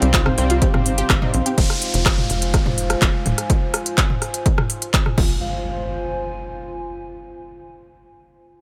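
Melancholic and dramatic, this melodic techno excerpt opens on a drop. A punchy, up-front electronic kick and a techno drum kit with smooth hats, handclaps, rim clicks, toms and crash cymbal drive a tight, sidechain-pumped sequencer bass under a deep, moody analog pad. Over this, a fat, detuned analog lead with vibrato and delay, lush unison pluck arpeggios with tape echo, and edgy, nasal sync-sweep polysynth stabs all sit in the background. A warbly, lo-fi tape-like pad drifts in at 0.3 s and lingers nostalgically to 7.3 s, while an electronic downlifter and impact sound from 1.6 s as the harmony settles onto F minor.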